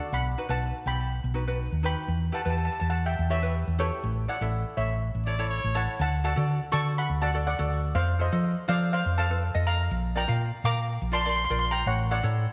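A shimmering steel pan carries the melody up front, its metallic tone struck with hard rubber sticks and trailed by a digital delay, in this festive, bouncy calypso clip cut from a longer piece. Beneath it, a round, amped hollow-body short-scale electric bass sits equally forward with a dark, fingered sound, while a bright acoustic ukulele is lightly fingerpicked. At 123 BPM in a straight 4/4, the harmony moves from B through Em and A before shifting at 6.0 seconds to a new section built on D, F7, Bb and A6. A clear, close-miked trumpet with light vibrato slips in for a brief jazz-style solo line between 5.3 and 6.0 seconds. A moderate concert hall reverb gives the ensemble an airy sense of space.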